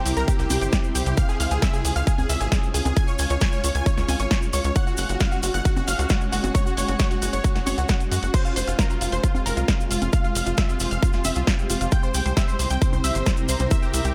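A straight pulse from an up-front, layered electronic kick drives this soaring, emotional uplifting trance passage, where a punchy analog drum machine recorded in a large room supplies congas, crash cymbal, hi-hat and snare over a grainy cabasa, while a tight, sawtooth sequencer bass pumps with sidechain beneath an airy, detuned supersaw stab melody with lush chorus and tape echo, a background unison pluck line in diffuse ambient delay, and a shimmering, ethereal pad of sustained chords moving from C through Db, Gbsus2 and Fm to C7.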